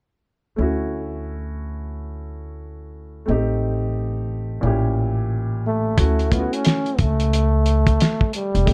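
Smooth and warm, this jazz-hop excerpt sits at an unhurried 89 BPM in D major, with a lazy swing on the sixteenths. A dark, woody upright piano and a pizzicato upright bass with steel strings open together at 0.6 seconds, moving through a Dmaj9 that slides into Am7b5 and then A7b9, the bass rounding out the low end with a warm, woody tone. At 5.7 seconds a mellow, close-miked trombone takes the solo melody, its vibrato giving the line a jazz-style character. The cloth-damped drum kit arrives at 6.0 seconds as the progression returns to Dmaj9, its fat snare, tight kick and hi-hat sounding muffled, gritty and saturated with a rolled-off top, like a small room. The mix is dry and dark, with every part placed up front for an intimate, warm feel.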